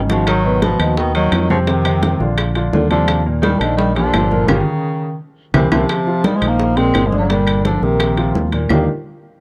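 Lively and danceable, this short stretch of Afro-Cuban jazz moves at a brisk 171 BPM in a straight 4/4 feel, centred on Eb major. A bass clarinet carries the melody, its soft attack and light vibrato sounding distant and roomy under a slapback echo. A breathy tenor saxophone shades a quieter second line with a vintage subtone beneath it, while a grand piano supplies natural-sounding chords and a round, up-front fingered electric bass anchors the low end. Bright congas, tight high-tuned bongos and woody claves sit in the background, while ringing metal-shell timbales round out the percussion. A drum fill opens the passage, and between 4.5 and 5.9 seconds another fill arrives with a band accent, leading into a new section built on chords such as Bb9sus4 and Gm before the passage comes to rest on Ebmaj7. The sound is dry and close, with the small-room ambience of a 1970s-style studio recording.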